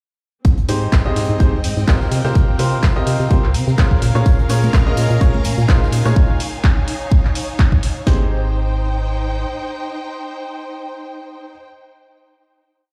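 Heard through a big sound system in a bare, stone-reverberant room, this uplifting piano house piece in Ab major moves at 126 BPM with a light swing, driven by a punchy four-on-the-floor house kit with cracking snare, an analog drum machine's claps and open hats, a very quiet looped jazz breakbeat, and a hollow, organ-like FM bass that jumps octaves under sidechain pumping. A clear, boxy concert grand plays dotted-rhythm chords through tape echo over lush, distant bowed strings with vibrato and portamento, while from 4.3 s a shimmering vintage string machine holds a high note and ringing tambourine and congas sit in the background. At 8.1 s the groove gives way to a final Abmaj7 chord carried by piano and strings until about 11.6 s, with the bass lingering beneath them until 9.5 s.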